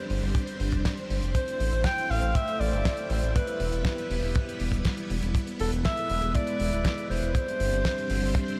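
A clear, close-miked alto saxophone carries the pop-style solo melody with delay, over lush vintage string-machine chords thickened by ensemble chorus, in this danceable, melodramatic italo disco excerpt at 120 BPM. A round, deep analog bass with a fast attack sits up front beside a tight, dry kick, while a damped 70s kit adds hi-hat and a fat snare with a rolled-off top. The chords move from Gsus4 through Am, Em and E before returning to Gsus4, and the whole mix is soaked in a huge, dreamy ambient reverb.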